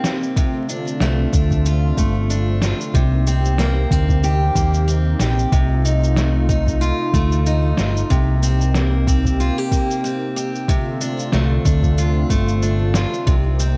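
A bright, picked steel-string acoustic guitar plays up-front arpeggios through digital delay in this delicate, intimate folktronica piece at 93 BPM in C dorian. It sits over a mellow, detuned sawtooth pad with chorus in the background, a round, punchy fingered electric bass entering at 1.0 s, a soft overdriven electronic kick, and a muffled, pitched-down electronic snare and shaker. Light digital ambience, dark production and vinyl crackle frame the mix as the chords move between Dm7/C, Cm7 and F7/C.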